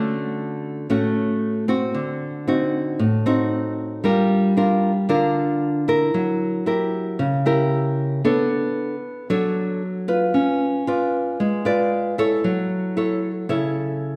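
A small, warm, fingerpicked nylon-string guitar plays alone up front in this relaxed, romantic bossa nova cut from a longer piece, moving at 114 BPM in D major through chords from Dmaj7 to F#m7, with a wet recital hall reverb giving it the sound of a church or concert hall.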